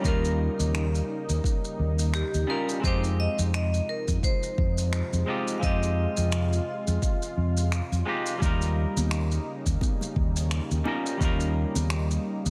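Sunset chillout with a wistful, smooth mood, cut from a longer piece and moving at a relaxed, lightly swung pace over chords that shift from Eb7 to Fm7 and back. A round, amped fingered electric bass sits up front, joined by a deep, layered electronic kick that stops at 11.4 s, while a distant, roomy brush kit adds finger snaps, hi-hat and shaker. A bright, clean semi-hollow guitar plays picked accompaniment through digital delay, and a thick, warbling vintage sawtooth pad holds detuned unison chords with chorus, slow attack and long release. A metallic, ringing vibraphone struck with hard mallets, motor off, carries the melody with digital delay from the start until 7.7 s. Hard-handed congas, close and dry, enter in the background at 9.0 s, and the whole mix sits in light, small-room reverb.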